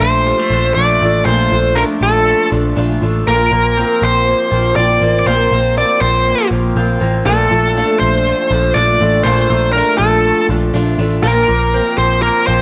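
A bright, smooth overdriven lead guitar carries the melody up front in this youthful, bright indie pop excerpt in straight 4/4, over a woody, shimmering twelve-string acoustic guitar with tube saturation, slightly broken-up lo-fi arpeggios from an electric guitar through a small old amp with phaser, and a dark, round, foam-muted electric bass, all moving between Bbmaj7 and Fsus4 in light reverb and digital ambience.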